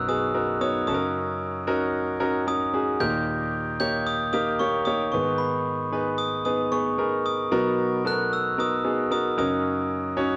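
A glockenspiel played with hard plastic mallets carries the melody in a high register, its bell-like, sparkling tone close-miked and full. Beneath it, a clear concert grand piano supplies the accompaniment, up front with a deep bass and a smooth, vintage character. This is an anthemic, uplifting pop passage in a straight 4/4, cut from a longer piece, with the harmony moving through Bmaj7, F#6, D#, G#m and back to Bmaj7 and F#6. Both instruments pass through cassette tape and plate reverb, and they sit in the moderate ambience of a small room on this home cassette recording. The piano sounds from the opening instant to 10.4 seconds, with the glockenspiel arriving at 0.1 seconds and stopping at 10.1 seconds.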